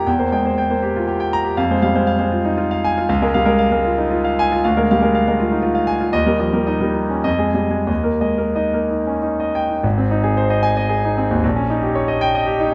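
A clear concert grand piano opens this romantic character piece for solo piano, sounding on a C7/E chord that moves to F minor. The mood is hopeful and lyrical, in 3/4 with a rubato feel that lets the tempo drift between 90 and 126 BPM, and the key settles into Ab major from 3.1 seconds. The harmony travels through Bbm7/Db, Bb7/D and Eb before the music turns to a new passage at 9.8 seconds, landing on Ab and then Eb7/Bb. The piano spans Ab1 to Bb5, with a deep bass underneath and a natural, up-front presence captured by close, detailed microphones and light reverb. This short passage is cut from a longer piece and breaks off at 12.7 seconds.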